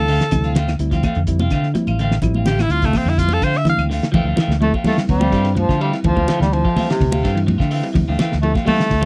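Afrobeat with a driving, defiant mood, cut from a longer piece, where an edgy, forceful alto saxophone solos up front over a round, dark fingered bass, a cloth-damped thuddy drum kit with a fat snare and gritty, muffled tone, hard-hand congas, woody claves in the background, picked clean guitar stabs, very quiet semi-hollow guitar arpeggios and a reedy electric piano, before a clear bass clarinet takes the melody at 4.6 seconds alongside a growling, veiled trombone in a bucket mute, all in a dry, close 1970s-style studio sound.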